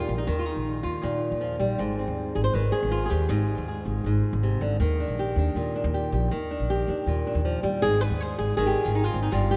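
A bright, fingerpicked flamenco guitar with audible finger squeak carries the melody up front, over a woody, pizzicato upright bass, from the very start of this fiery yet mournful flamenco fragment, all bathed in the long, echoing reverb of a vast cathedral space.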